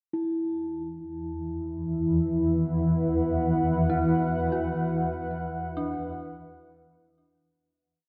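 Dark ambient drone at 64 BPM, ominous and unsettling, where a bronze singing bowl rings with slow metallic beating from 0.1 seconds, a swarming, granular drone and a deep, moody pad of slowly shifting chords rise up front in a vast cathedral reverb, and an eerie, inharmonic synth bell enters at 3.9 seconds in the background with chorus, phaser and delay, its two slow loops of unequal length drifting against each other as the piece fades out by 7.6 seconds.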